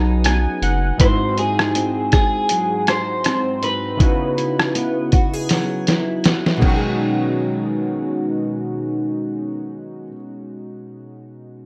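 A brief synth-keys fill opens this hazy, nostalgic indie-pop excerpt, as a twangy, slightly broken-up electric guitar melody through a small old amp, with lush chorus and tape echo, joins fingerpicked steel-string acoustic guitar carrying finger squeak, warbly pitch drift and plate reverb, and a round, deep analog bass that drops out by 0.9 s. Muffled, pitched-down sampler drums sit up front with a thumpy kick, rim click, snare, hi-hat and crash, closing on a fill before they stop at 6.8 s. Airy, detuned sawtooth keys with chorus and plate reverb carry on past the acoustic guitar to the end of this dark, warm production.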